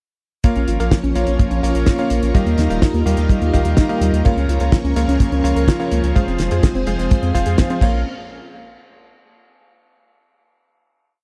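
Italo disco at 126 BPM in Bb dorian, this short, danceable and nostalgic piece sets a tight, up-front four-on-the-floor kick and a damped 70s kit with fat snare, closed hi-hat and crash under a deep, nasal analog bass in galloping sixteenths, a lush string machine pad with ensemble chorus, a soft background pluck arpeggio with chorus and tape echo, and clangy electric grand piano stabs in dotted rhythms, all moving through Bbm, Ebadd9, Bbm/Db and Fm in a dry, close 1970s-style room before a final hit from 8.1 seconds.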